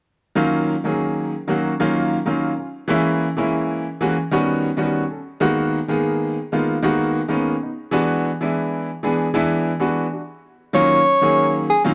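The sound is dry and close, with the intimate ambience of a small 1970s-style studio and a touch of light reverb. This short jazz fragment in Eb minor moves at 95 BPM in 4/4, with a gentle swing on the sixteenths and an intense, funky mood. A bright concert grand piano carries the accompaniment from 0.4 seconds, sitting up front with a brilliant, natural tone and a deep bass as it moves through Ebm9, Bbm7b5, Eb7alt, Abm9 and E9 before returning to Ebm9. At 10.7 seconds a breathy soprano saxophone steps forward with a clear solo melody, its light vibrato and slapback echo giving the line a vivid presence. The piece is cut short at 11.9 seconds, just as the new passage begins.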